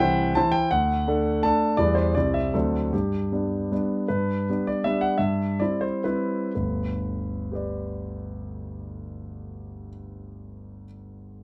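Lightly reverberant and intimate, this brief fragment of a longer classical piece presents a solo concert grand piano, up front with deep bass, audible action noise and a vintage smoothness, playing a proud, rustic romantic dance in 3/4 and G major with dotted rhythms and free rubato between 115 and 177 BPM, slowing from 3.5 to 6.5 seconds as the harmony moves from C and D through Em7 and D7 to a settled G.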